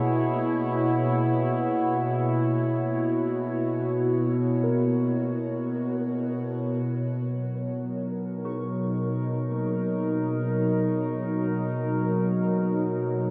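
Bathed in a huge, wet reverb with a 7.0-second tail, this ambient excerpt sounds serene and peaceful. Up front, a warbling, tape-like pad holds mellow, detuned chords with a nostalgic lo-fi haze, softened by chorus and its own reverb. Beneath it, a resonant drone with slowly moving overtones and a ring-modulated edge sustains until 6.9 s. In the background, muted, felt-like synth keys play dark, intimate arpeggios through chorus and tape echo, fading in from 6.8 s. The harmony rests on E6/B before settling onto Bmaj7 at 6.8 s.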